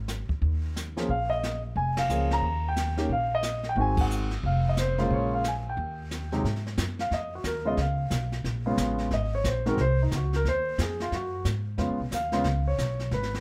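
A playful jazz piano trio excerpt swings at 179 BPM in Ab mixolydian, with woody pizzicato upright bass opening the groove, a brushed drum kit adding dark cymbals and a boomy kick, and an up-front concert grand with deep bass and plate reverb entering at 1.0 s before taking a solo from 6.4 s over Db7 and Ab7 changes, all in a small, natural-sounding room with a faint mains hum.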